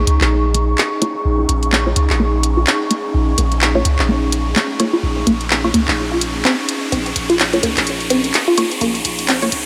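Locked to a swung 127 BPM 4/4 pulse in Bb minor, this hypnotic, clinical minimal techno excerpt builds throughout under filter sweeps, as a layered garage kit with handclaps and warm hats and a punchy sine sub bass sit up front beneath a squelchy, resonant blip pluck soaked in phaser, cassette tape and dub echo, muted yet bright filtered dub chord stabs with phaser and digital delay, an airy, breathy chorused pad, a very quiet swarming, warbling drone arriving at 1.5 seconds, and an electronic riser climbing from 0.4 seconds, all wrapped in light digital ambience.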